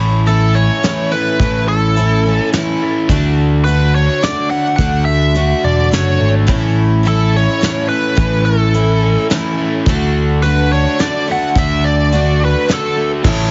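A biting, overdriven lead guitar with tape echo carries the melody up front in this jangly, nostalgic folk rock and heartland rock excerpt, moving at 106 BPM in a straight 3/4 over chords that alternate between A and D. Beneath it, a shimmering, octave-doubled twelve-string acoustic guitar and a double-tracked, overdriven electric guitar riff fill out the accompaniment, while a warm, amped electric bass sits prominently and a soft brush drum kit adds dark cymbals, a fat snare and a punchy kick. A clear grand piano slips in quietly in the background at 13.2 s, and the whole mix carries light small-room reverb and a heavily compressed, radio-like sound with a muted top end.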